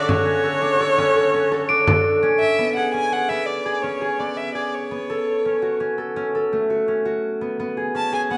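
In a straight 7/4 at 168 BPM, this pensive, urgent contemporary chamber excerpt sets an up-front concert harp's ringing, fingerpicked arpeggios beneath a rich, boxy solo violin melody full of vibrato and portamento. A warm, tight woodwind section holding sustained chords, a compressed, saturated frame drum struck with hard hands and a barely audible metallic vibraphone second line accompany them from the opening before all three fall away by 2.6 seconds. Bell-like vintage crotales shimmer from 1.7 seconds, and a wet recital hall reverb surrounds the whole ensemble.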